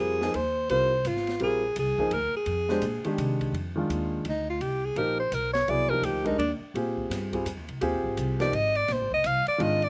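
Modal jazz in a swinging 3/4 at 168 BPM, this brief excerpt cut from a longer piece feels intense and hypnotic, settling into F dorian at 3.5 seconds. A clear alto saxophone carries the melody up front, its soft attack, light vibrato and scooped notes giving it a supple jazz voice before it stretches into a solo from 3.5 seconds onward. Upright piano supplies accompaniment with a woody, polished tone and long sustain, sitting forward alongside the horn. Beneath them, pizzicato upright bass on steel strings adds a warm, woody low end, while an acoustic drum kit entering at 0.2 seconds mixes hi-hat, ride, a high-tuned snare, dark cymbals and a boomy kick with a small-room character. The harmony moves through suspended ninth chords, shifting from A#9sus4 to F9sus4 and then Bb9sus4, and the overall sound is dry, with little reverb and an outdoor setting.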